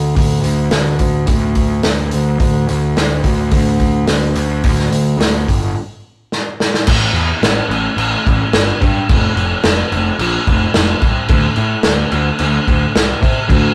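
A fuzz-soaked picked electric bass opens this raw, swaggering garage rock excerpt, joined at 0.2 seconds by a vintage acoustic drum kit at a straight 108 BPM in 4/4. The bass sits up front with a growly, overdriven tone thickened by tube saturation, ranging from F1 to C3. The drums are close and present, with a punchy kick, a medium-tuned snare, hi-hat and crash cymbal, and a rolled-off top end. Around 5.8 seconds the groove breaks, and a drum fill from 6.3 seconds carries into a new section at 6.9 seconds. A moderate stone-room reverb and rough rehearsal-room sound give the duo a live, gritty character, and the music is cut from a longer piece.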